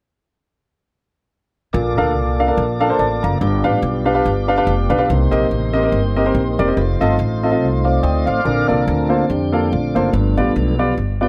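At 1.7 seconds, a baby grand piano, a tonewheel organ and an upright bass come in together on a Bbmaj7 chord, launching this hopeful, jubilant slice of uptempo gospel at 143 BPM in 4/4 with a light swing on the eighth notes. The piano's natural, warm tone sits up front as accompaniment, while the bass is plucked pizzicato with a woody, acoustic voice on steel strings. The organ holds round, dark sustained chords, clean but for a touch of key click and vibrato, turning through a slow rotary speaker. The harmony cycles through Bbmaj7, G7, Cm7 and F7 in Bb major, tuned a little sharp to A4 = 444 Hz. At 8.5 seconds the music moves into a new section and the mellow organ steps forward to solo over the returning Bbmaj7 and G7 changes until 11.3 seconds, all set in a light reverb.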